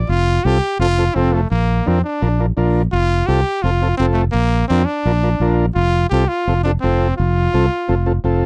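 Festive and danceable, this brief cut from a longer Latin piece in F major moves at a straight 170 BPM in 4/4, with a bright, close-miked trumpet taking a pop-style solo up front from 0.1 seconds while a round, punchy fingered electric bass anchors the low end and a reedy vintage combo organ with light vibrato fills in the accompaniment over alternating F and Bb chords, all captured in a dry, close 1970s-style studio sound.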